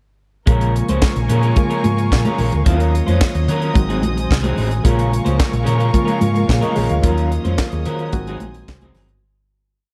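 A four-on-the-floor beat from a tight, up-front funk drum kit with sixteenth-note hi-hats and clap-layered snare drives this sultry disco piece, joined by a round hollow-body bass playing a syncopated line with chromatic approach notes, a twangy, slightly broken-up electric guitar chopping sixteenths through spring reverb, a reedy, overdriven electric piano pulsing with fast tremolo and short fills, a soft-edged dark string pad, and very quiet vintage congas, all in a dry, close room with faint mains hum before fading out from 7.0 seconds.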